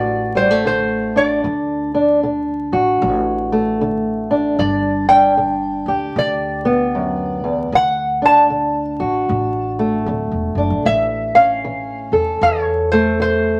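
A bright, nasal metal-body resonator slide guitar, played with fingerpicks, carries the melody up front from the first second, alongside a fingerpicked old ladder-braced acoustic guitar whose boxy, woody tone and old strings give the accompaniment a dusky weight. Beneath them a thumpy pizzicato upright bass with steel strings sits low in the mix, anchoring this soulful, rollicking acoustic country blues in D major at 76 BPM with a swung 4/4 feel. The chords move from D to G, back to D and up to A at 10.9 seconds, all set in a moderate studio reverb with a layer of vinyl crackle across this 13.6-second excerpt of a longer piece.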